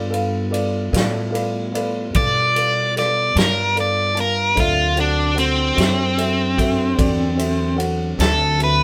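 Lightly reverberant and live in one room, this swaggering, laid-back slow blues in 12/8 at 50 BPM sets a dark, intimate grand piano with audible action noise, a soft, flute-like tonewheel organ on a slow rotary speaker in the background, woody pizzicato upright bass and a natural drum kit with fat snare, punchy kick and ride over G7 moving to D7, while an up-front, overdriven electric guitar enters with a picked solo at 2.2 seconds.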